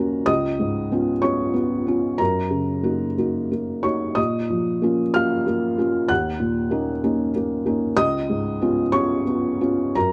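A felt-muted upright piano opens this short passage alone, its thick felt giving each note a soft, mellow tone with audible action noise close up front. It is neoclassical minimalist piano in 6/8 metre, played with a flexible rubato feel that gives the brief 10.1-second excerpt an intimate, wistful mood. The piano spans a broad register, from deep bass notes up to high, delicate treble. The harmony moves slowly through Db7, Gb6, Bbm and Ebm7 before returning to Db7 near 8.0 seconds. Light reverb and a dark, warm production keep the natural sound of the instrument close and hushed.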